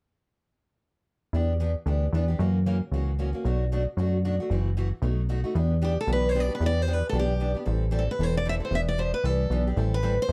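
Acoustic string swing in the jazz manouche style, this short cut from a longer piece moves at a brisk 228 BPM in E minor with a bittersweet, swinging mood. From 1.3 seconds a picked, plugged-in archtop guitar comps the chords with a boxy, bright tone and audible finger squeak, while a plucky analog bass sits up front underneath, its punchy, funky filter pluck blending sawtooth and square-wave colour with a fast attack and decaying notes. The harmony opens on Em7 and moves through F#7, Bm7, F#m7b5 and B7. At 5.8 seconds a picked steel-string acoustic guitar takes the melody, up front with fresh strings, a concert-grade sparkle and its own finger squeak, over a second passage that alternates Em7 and Am7. The production is dark and warm with light reverb, and all three parts run until 10.3 seconds.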